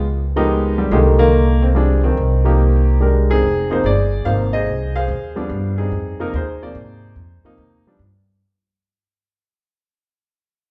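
A swung 3/4 lilt at 144 BPM carries this moody, cool jazz piano trio fragment, where a clear, up-front upright piano sings the melody over moody Db13 and Cm11 harmony and then a Fm7 and G7 passage, an up-front pizzicato upright bass with woody steel strings holds the low end, and the live-room take, bathed in a wet large-studio reverb with a dulled top, fades out from 3.4 s until the piano stops at 8.0 s and the bass at 8.4 s.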